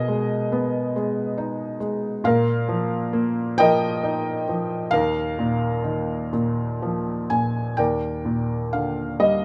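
A felt-muted upright piano opens this short fragment of a longer classical piece, playing alone from start to finish. Its tone is soft, mellow and intimate, the thin felt taking the edge off each note while the instrument sits up front. The mood is calm and warm, with a lyrical line that unfolds in a lilting six-eight metre and a loose, rubato sense of time. Suspended, open-sounding harmonies drift by before settling onto a rich major-seventh chord at 7.8 seconds, where a new section begins. A light reverb adds a touch of space around the piano, and the passage ends at 9.4 seconds.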